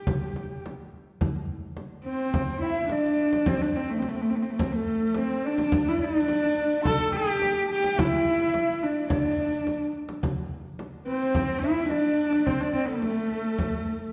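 This excerpt of Mongolian folk opens at 0.0 seconds with a husky, up-front horsehead fiddle carrying the melody, its soft-attacked bowing marked by light vibrato, portamento and an airy, intimate character, joined at 0.1 seconds by a deep, dry frame drum played with soft hands. From 2.1 seconds a large dizi adds a second line, its buzzing membrane lending a pure yet rolled-off bamboo tone shaped by tonguing and expressive vibrato. The mood is proud and galloping, and the piece is set in a reverberant recital hall heard from further back in the room.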